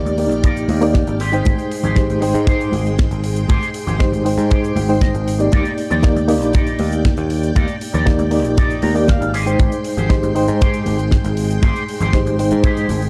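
A steady, straight 4/4 pulse at 118 BPM drives this sunny, feel-good nu-disco cut, anchored by a punchy, airy kick drum sitting up front from 0.4 seconds and a damped 70s kit whose fat snare and hi-hat stay dry. Bright congas and cabasa sit close yet in the background, while a picked electric bass adds a growly, direct low end with tube saturation and sidechain pumping. Up front, a reedy, worn electric piano, slightly out of tune and lightly overdriven with fast tremolo, carries the accompaniment over chords moving between Ebmaj7 and Abmaj7. A lush string machine with a sawtooth, sub-octave tone and slow attack holds sustained chords through ensemble chorus and pumping, and an envelope-filtered electric guitar plays a clean riff coloured by analog chorus, low-pass filtering and tape echo. A clean electric guitar fill appears at 4.5 and 8.6 seconds, and the whole mix has a gritty hardware character with transformer saturation, cassette tape grain and little reverb, heard as a cut from a longer piece.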